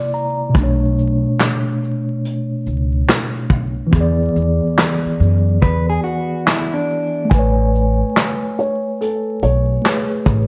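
This melancholic, reflective lo-fi hip hop excerpt opens with a mellow tine electric piano fill, its clean, filtered tone carrying the accompaniment from the first moment through chords of C9, Bm9, E7 and Amaj9. A vintage brush drum kit joins at 0.1 seconds, sounding close and small-roomed with a medium-tuned snare, tight kick, hi-hat, shaker and handclaps under a rolled-off top, all set in a relaxed 71 BPM groove with a lazy sixteenth-note swing. A woody pizzicato upright bass enters at 0.6 seconds, sitting up front beside the drums. Midway, a dark, slightly broken-up electric guitar adds a brief fingered second line, filtered and trailed by analog delay. After a fleeting touch at the very start, a felt-muted upright piano returns near the close with a soft, intimate, thickly dampened melody, while vinyl crackle and light studio reverb give the whole a hazy, worn character.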